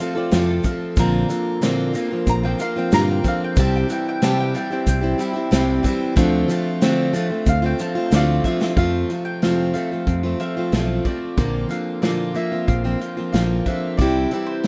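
A round, double-strung mandolin carries the melody as a solo through the first 8.8 seconds of this reflective, wistful folk rock and heartland rock piece, cut from a longer song, its picked notes trailing an analog delay over a straight 92 BPM groove in 4/4. Up front, a plugged-in steel-string acoustic guitar plays a picked accompaniment with audible finger squeak, while a twangy, slightly broken-up electric guitar plays a lo-fi riff in the background, a grainy tube shaker stays in the background until 8.6 seconds, and a fingered electric bass and a natural country drum kit with punchy kick and medium-tuned snare enter at 0.3 seconds. A drum fill leads into the second section as the chords cycle through F, Bbadd9, C and Dm7, all set in light studio reverb with the loose feel of a rough home demo.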